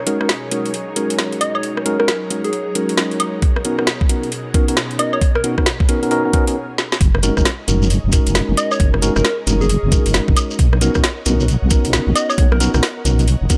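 A deep, detuned wobble bass arrives at 7.0 seconds under an overdriven, knocking electronic kick that enters at 3.4 seconds and a garage kit of woody snare, metallic hats, rim click and woodblock. This soulful, bouncy two-step UK garage cut runs at 134 BPM in F# major with swung 16ths, moving between F#6 and Bmaj9, as a mellow tine electric piano plays stabs through tape echo, a round FM synth lead with tremolo carries the melody, a grainy shekere joins the drop, and ethereal and breathy vintage pads pump with sidechain in the background.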